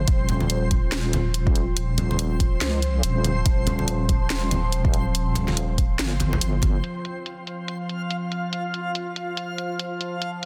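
A meditative, cavernous deep dubstep excerpt at 142 BPM in a swung half-time feel opens on a wave-folded sawtooth drone with moving overtones, a dark, detuned wobble bass up front around Eb, and a bright, reversed granular texture, joined almost at once by an overdriven, up-front electronic kick, a garage kit of low-pass-filtered hi-hats and a cracking snare, and hard-handed acoustic congas in the background, until the bass, kick and congas fall away by 6.8 seconds and the drone, texture and kit carry on to 10.5 seconds under a dense, heavily limited master with light reverb.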